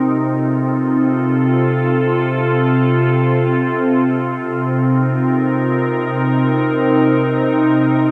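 A huge, wet reverb with a 8.9-second tail surrounds this serene, reflective ambient fragment in free time, cut from a longer piece in C dorian. A single evolving wavetable pad sits up front and carries the whole 8.1 seconds alone, its detuned, warbling sine tone morphing with a slow attack, long release, chorus and a diffuse delay that adds a mellow, vintage haze. The harmony drifts from F over C to C minor seventh at 4.2 seconds, with the pad ranging from C3 to Bb4.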